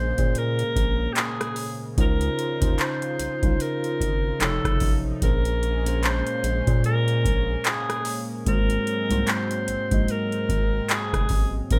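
Sensual and moody, this contemporary R&B excerpt sets a clear alto saxophone, with subtone, light vibrato and scooped notes, over a mellow tine electric piano, a round analog bass with a plucky filter, a shimmering chorused pulse-width pad in the background, and a booming analog drum machine with a deep kick, metallic hats, handclaps and rim clicks that enters at 0.2 seconds, all moving through minor-ninth, major-ninth and dominant chords under light reverb with a swung sixteenth-note feel.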